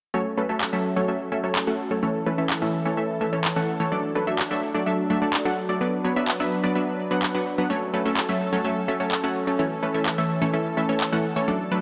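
A straight 4/4 pulse carries this emotional, powerful festival progressive house passage, cut from a longer piece, with tape-toned, layered electronic handclaps up front from 0.6 seconds. A punchy, detuned supersaw stab plays the riff with a fast-attack filter pluck, low-pass filtering and digital delay. Behind it, a thick, warbling vintage unison pad holds sustained chords with a slow attack and chorus, all set in a lush hall reverb with a darkened top end.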